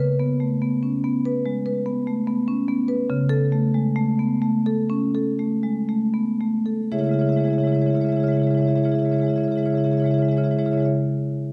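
A wet recital-hall reverb surrounds this brief fragment of a longer contemporary classical piece for solo marimba, while the marimba itself sits close-miked, dry and up front with a full, warm body. Played with medium hard mallets across a range from C#3 to E5, the instrument carries a hypnotic, flowing mood in C# minor. The pulse is rubato in 4/4, moving between 56 and 73 BPM, and the music slows down over its first 6.9 seconds on an Aadd9/C# harmony. At 6.9 seconds a new section begins, settling onto C# minor until the marimba stops at 10.9 seconds.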